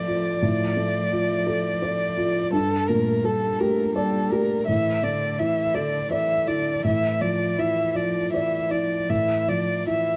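Close, intimate miking and light reverb frame this short passage of neoclassical chamber music for piano and strings, cut from a longer piece. A felt-muted upright piano sits up front, mellow and boxy, its accompaniment spanning G2 to D5 with audible action noise. A single bowed violin carries the melody between A4 and E5, played sul tasto with vibrato in a dark, woody tone. One cello plays a quieter second line from D3 to A3, warm, with a soft attack, airy bow and light vibrato. All three parts play throughout the 10.2 seconds in a rubato 6/8, moving through Dm/A, Gmadd9 and Asus4 before reaching Dmadd9/A at 6.8 seconds, and the mood is fragile and melancholic.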